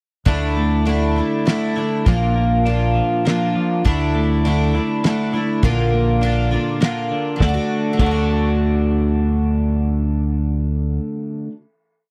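Folk rock and heartland rock in a nostalgic, open-road mood, this short, complete piece moves at 101 BPM in 3/4, with a verse alternating Dsus2 and Bb before settling on a D chord held from 7.4 s. A shimmering, octave-doubled twelve-string acoustic guitar strums open chord shapes with subtle chorus, while a twangy, compressed twelve-string electric guitar picks bright arpeggios and a round, punchy fingered bass plays a dotted figure. A cloth-damped, thuddy drum kit with a fat snare, tight kick and dark cymbals carries the 3/4 groove until 8.2 s, all captured in a dry, close 1970s-style studio sound.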